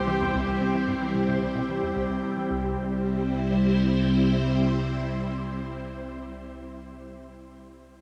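A swirling, up-front phased string machine holds sustained C major chords through the whole 7.3 seconds of this brief, cosmic and luminous fragment of ambient, sequencer-driven space music at 111 BPM, its vintage sawtooth tone treated with ensemble chorus, phaser and shimmer reverb. Beneath it a nasal analog drone bass with pulse-width modulation sits low on C2 until 4.1 seconds, while a tight, driving sequenced synth riff with a detuned filter pluck runs until 2.8 seconds, and a resonant, bubbling texture of random filter steps glints above until 2.5 seconds. The whole passage sits in a vast, echoing space with a huge ambient reverb.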